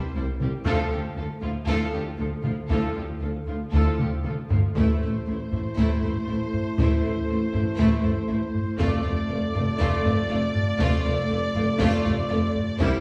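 A close, dry taiko ensemble struck with hard sticks drives this dramatic, epic orchestral film cue in A minor at 119 BPM, with a drum fill from 4.0 to 4.8 s opening into the main section over an Am chord. Lush, vibrato-rich violins carry the melody and a background second line above smooth violas, while a very quiet cello section, a background double bass section and a light-vibrato tuba hold the bass. Mellow French horns sustain chords and a clear trumpet section punches out tight stabs, all set back in a reverberant recital hall.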